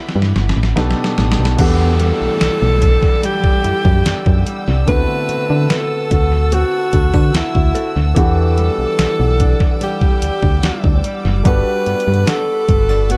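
Set at a slow 73 BPM in a straight 4/4, this contemporary R&B excerpt in E minor opens with a drum fill from a detuned 8-bit digital drum machine, its thumpy kick, medium-tuned snare, hi-hat and crash sounding tape-warm and up front, with a punchy, round FM bass entering at 0.2 seconds with a dark, decaying tone and a fast attack. A clear alto saxophone carries the melody throughout, close-miked and jazz-styled, with light vibrato and scooped notes that give the late-night, longing mood its voice. Behind it, a grand piano plays accompaniment and a studio string section holds sustained, bowed chords played sul tasto with a soft attack and smooth top. At 1.6 seconds the harmony settles onto Em9, and a fingerpicked flamenco guitar adds arpeggios while a woody, mellow synth pluck with chorus adds a very quiet texture and an electronic downlifter sweeps through until 8.2 seconds. Tape echo colours the saxophone, piano, drums and guitar, and the echo-heavy mix sits in a small room with lossy compression artefacts, moving through D13 and back to Em9 before landing on Gmaj7.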